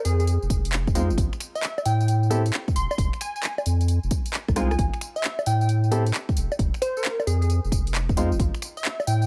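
Swung sixteenths at 133 BPM drive this bouncy, late-night two-step UK garage passage in A minor, cut from a longer piece, where an overdriven house kit of bright hi-hats, handclaps, finger snaps, rim clicks, tambourine and bongos rides over a deep, saturated sub bass, a punchy overdriven electronic kick arrives at 0.5 s, up-front grand piano stabs with dub echo join at 0.9 s, a glassy, detuned wavetable pluck melody with chorus, dub echo and a moving notch floats above, and a brief drum fill at 4.4 s sits within light reverb.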